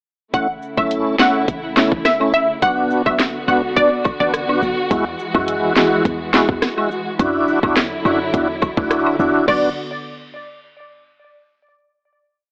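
A tough, bouncy dancehall piece, a full short chorus, runs on an electronic island pop drum kit with a tight kick, a sharp snare layered with handclaps and metallic hats, while a punchy, short 808-style bass slides underneath and a close, dry woodblock and cabasa tick away in the background. Up front, a lightly overdriven tonewheel organ with slow rotary speaker and chorus vibrato pumps syncopated chords over a dark, woody string section, and a bright, detuned analog pluck with tape echo carries a syncopated hook until 4.3 seconds, returning briefly at 9.5 seconds. The whole mix has the boxy, narrow colour of an AM radio, with light reverb, and it settles on a closing Bm chord from 9.5 seconds.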